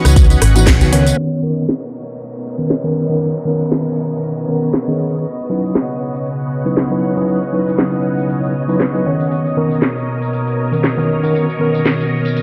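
A mellow tine electric piano with 12-bit sampler grit, tape echo and a filter sweep provides accompaniment in this cosmic, sensual nu-disco excerpt alongside lush, chorused sawtooth string-machine chords and a house drum kit with a cracking snare and metallic, filtered hats, while a bright, punchy envelope-filtered bass and a layered electronic kick appear only briefly near the start, before 1.2 seconds, and a faint downlifter drifts in the background from 1.4 to 5.2 seconds, all in a dry, gritty mix.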